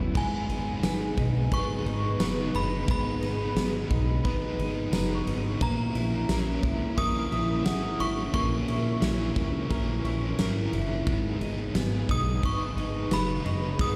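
A huge arena drum kit drives this ethereal, melancholic dream pop excerpt, opening with a fill and then settling into a straight 88 BPM groove in 4/4. Its punchy kick, medium-tuned snare, bright cymbals and tambourine carry a pumping hall character. Beneath it, a chorused synth bass supplies a retro, glossy pulse-wave and sawtooth tone with a filter pluck. A synth chime carries the melody in a ringing, inharmonic FM voice with ensemble chorus and digital delay. The harmony moves from G# minor to A# diminished at 5.6 seconds and back to G# minor at 11.1 seconds. Around them, a cranked stack guitar adds overdriven, picked accompaniment with tremolo and lush chorus, while a twangy, compressed twelve-string electric guitar plays arpeggios in the background. A vintage string machine holds sustained viola chords, and a faint, slightly out-of-tune worn celesta sprinkles delicate, bell-like texture through digital delay. 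The whole piece sounds as if played on a big sound system in a bare room, with stone room reverb and a light, small-room ambience.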